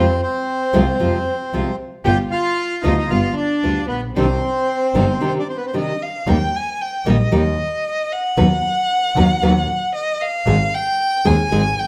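In a loose, rubato 4/4, this melancholic, tense tango fragment opens with a reedy, bright bandoneon carrying the melody over fingerpicked nylon-string guitar (complete with finger squeak), a bowed, earthy double bass and very quiet, dark, lush stabs from a distant string section. After a brief break at 5.2 seconds, the bandoneon and strings fall away and the warm, bowed violin, which has shadowed the tune as a second line, takes an expressive solo from 6.3 seconds, rich in vibrato and portamento. The moderate, large studio reverb gives the whole a spacious, dusky sheen.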